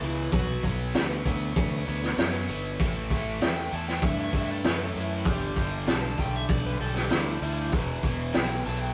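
A rough rehearsal-room recording with light reverb captures a smoky, heavy stretch of blues rock power trio and southern rock cut from a longer piece, where a raw, gritty garage drum kit sits up front with a boomy kick and high-tuned snare, a growling, punchy fingered electric bass with overdrive and a biting, double-tracked overdriven guitar riff move through Bm, A5, G and E5, and a dark overdriven slide guitar carries the melody through tape echo.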